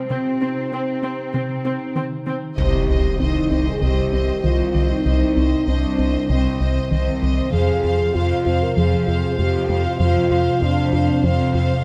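A deep, round analog bass riff drives this brooding, relentless cinematic piece in C minor at 97 BPM, arriving at 2.6 s with mellow French horn chords, lush vibrato violins on a second line and a background electronic impact, all over a warbly, lo-fi tape-like pad with chorus, a distant symphonic cello bass, a brief close viola accompaniment and soft, dark pluck arpeggios, moving from Cm to Fm at 7.5 s in a recital-hall reverb.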